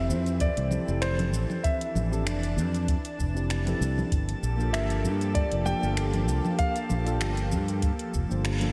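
Blissful and smooth, this sunset chillout fragment in F major moves at 97 BPM with a lightly swung 4/4 feel, shifting from Fmaj7 to Gm9 at 4.1 seconds. A concert grand piano with deep bass and short sustain carries the melody through analog delay, over a clean tine electric piano with vintage sampler grit and delay, a thick, detuned sawtooth unison pad treated with chorus and phaser, and a fingered electric bass sitting up front. A glassy, drifting harmonics texture enters at 0.6 seconds in the background, while a deep house kit of congas, finger snaps, metallic hi-hat and shaker joins a deep analog-style electronic kick in a dreamy, reverb-soaked hall mix, closing on a band accent at 8.4 seconds.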